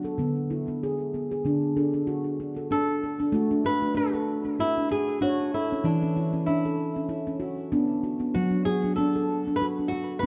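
A calm, gentle world piece in a meditative tuned-percussion style opens with a handpan alone, its ringing, mellow arpeggios of nitrided steel struck with soft fingertips, sitting up front with a touch of delay. At 2.7 seconds a fingerpicked flamenco guitar enters with a melody, its fresh strings giving an acoustic, warm voice that also carries delay and stays close in the mix. The handpan spans a broad range beneath the guitar's narrower line, and both continue together until the recording ends at 10.3 seconds, as it is cut from a longer piece. The harmony moves from E/D to D, then A and B minor, over a relaxed 4/4 pulse with a light swing. A reverberant recital hall and a small-room ambience surround the parts, and the overall production is dark and warm, suiting the quiet, contemplative mood.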